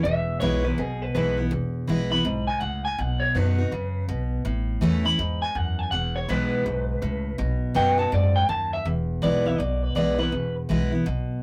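A swung, rollicking 4/4 feel drives this upbeat rockabilly fragment, where a twangy, slightly broken-up electric guitar through a small old amp takes a clean solo until 8.9 seconds over a full-bodied jumbo acoustic guitar, with its finger squeak, and a thumpy, woody pizzicato upright bass, all sitting up front in a rough rehearsal-room sound with warm saturation and moderate booth ambience.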